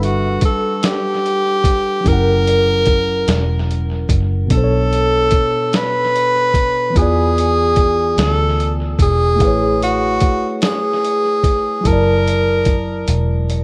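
Sultry and late-night, this slow six-eight R&B excerpt moves at 49 BPM. A breathy, subtone tenor saxophone carries the melody up front with tape echo over a mellow tine electric piano, a dark, foam-muted fingered electric bass and a gritty, sampler-style soul drum kit with a thumpy kick, all under light digital reverb in an echo-heavy mix. The chords run from Gmaj7 through F#7, Bm7, E7b9 and Amaj7 to F#7alt, and a drum fill closes the passage at 13.1 seconds.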